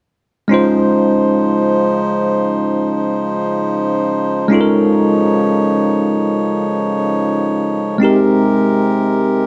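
In free time, this tender, dreamy contemporary R&B excerpt sets a bell-like, bright and clean tine electric piano, heard through its built-in speakers, beside a reedy, breathing, mellow hand-pumped harmonium holding sustained chords, both up front from 0.5 to 9.5 seconds under a moderate plate reverb as a Dbmaj9 chord gives way to Abmaj9 at 8.0 seconds.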